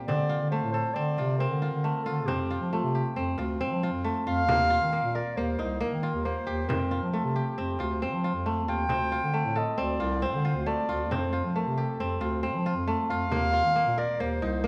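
This contemporary instrumental chamber piece moves in an uneven 5/4 at 136 BPM with a straight, urgent and hypnotic feel, tuned slightly high to A4 = 444 Hz. A crisp, ringing kora, fingerpicked and placed up front, opens the passage at 0.0 seconds with bright arpeggios. A clarinet carries the melody in a classical style with a soft attack, while a bass clarinet anchors the low end up front, and both share a mellow tone. A small, vintage-sounding frame drum sits in the background with a band-limited character. The harmony circles through Dm7, Fsus2 and Ebsus2, and a moderate recital hall reverb gives the ensemble a natural sense of space. The passage is cut from a longer piece.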